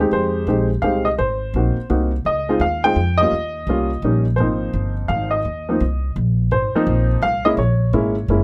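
A baby grand piano carries the melody up front, its intimate, natural tone close enough to catch the action noise and its short sustain, while a pizzicato upright bass sits beside it with a woody, dark steel-string sound. This sophisticated, warm jazz piano trio fragment swings in 3/4 at 169 BPM in Ab major, moving through Fm7, Ab7, Dbmaj9 and Eb7 to Ab69 before a Gb9 at 7.6 seconds. The room is dry and closely miked, and both instruments play throughout the 8.4-second cut from a longer piece.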